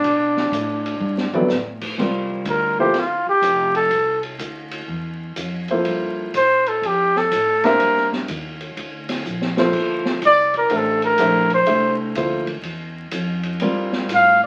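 A mellow trumpet with light vibrato leads up front from the first moment, over woody pizzicato upright bass and a natural-sounding jazz kit with dark cymbals, a high-tuned snare and a boomy kick; after a drum fill at 1.0 s, a prominent grand piano joins at 1.3 s to accompany this searching, open modal jazz swing, and the trumpet's solo begins at 2.0 s, wrapped in a reverberant studio ambience and the crackle of a very old 78 rpm record.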